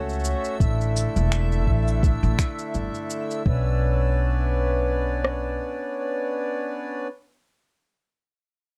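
A woody, thumpy pizzicato upright bass on gut strings, given tube saturation and a filter sweep through its first 3.5 seconds, underpins this delicate, autumnal folktronica fragment in B minor at 84 BPM with a 16th-note swing, alongside an up-front, reedy, breathing pedal harmonium holding sustained chords, organic electronic drums with a soft kick and rim clicks, a tape-tinged electronic shaker with finger snaps, and a dreamy, detuned, granular backwards swelling texture in the background, set in a dark production with light reverb.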